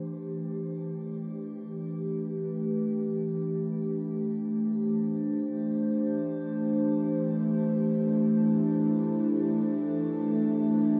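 Drenched in an enormous reverb with an 8.8-second tail, this dreamy ambient fragment, cut from a longer piece, feels spacious and reflective. Up front, a warbling, tape-like pad holds sustained chords with a nostalgic, lo-fi darkness, its detuned square and triangle tones colored by ring modulation, chorus and a shimmer reverb, each chord blooming slowly and fading on a long release. The harmony drifts from Am to Esus4 and then settles on Cadd9 at 3.3 seconds, all tuned slightly low to A4 = 439 Hz. At 6.9 seconds an overtone-sweeping drone enters in the background, its resonant sawtooth and sine blend shifting in color beneath the pad. Both parts sustain together through to the close at 11.0 seconds, suspended in the haze.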